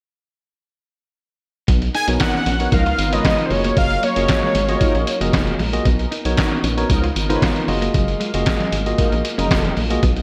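A straight, danceable 4/4 groove from a muffled, pitched-down sampler-style drum kit, with thumpy kick, snare, hi-hat and handclaps, sits up front from 1.7 seconds alongside a rubbery, bouncy square-wave bass, setting up smooth early-eighties boogie funk. A fat, nasal analog lead with ring modulation, slapback and tape echo carries the melody from 1.9 to 5.6 seconds. Beneath it, a tine electric piano with slapback echo, a round synth brass second line with chorus and phaser, a very quiet clean electric guitar riff and a warbling, detuned analog pad fill out the extended chords, all inside a lush hall reverb that gives a big arena sound.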